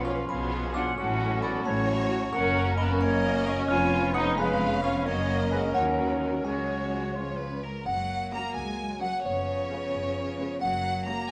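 Heard through a wet scoring-stage reverb, this excerpt of a playful, whimsical cinematic film cue in 6/8 has a quirky, magical air. A delicate, tinkling music box carries the melody alongside a rich, close chamber violin section, while a pure metal-toned flute, a dark cor anglais, a clear clarinet and a lush symphonic violin section weave second lines; the three woodwinds stop at 7.6 s, just before a new section begins at 7.9 s. Beneath them, a smooth viola section sits in the background, a warm French horn section holds sustained chords, and a focused cello section and an even double bass section carry the bass.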